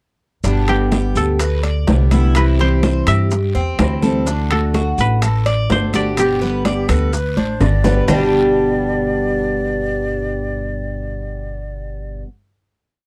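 Relaxed and warm, this whole piece is Cuban son in the guajira vein, moving at 126 BPM in a straight 4/4 and settled in G major over a simple G, C, D, G progression. From 0.4 seconds a picked dreadnought acoustic guitar strums with muted slaps, a bright, metallic Cuban tres spins an arpeggiated guajeo on double strings, and a dark, up-front upright bass plays a pizzicato tumbao that anticipates the chords. The percussion bed sits mostly in the background: ringing congas with slaps and open strokes, tight, saturated bongos in steady eighths with hand bell, metal-shell timbales with shell pattern and bell, a raspy guiro, grainy maracas, and very quiet, distant claves holding a two-bar time line. A mellow, fingerpicked koto carries the motif-based call phrases, and from 6.7 seconds a breathy, hollow jazz flute with vibrato and a soft attack adds answering phrases in the koto's rests. A drum fill closes the section, the percussion and koto stop at 8.2 seconds, and the guitar, tres, bass and flute ring out a final chord. 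The sound is dry and close, in the manner of a 1970s studio recording.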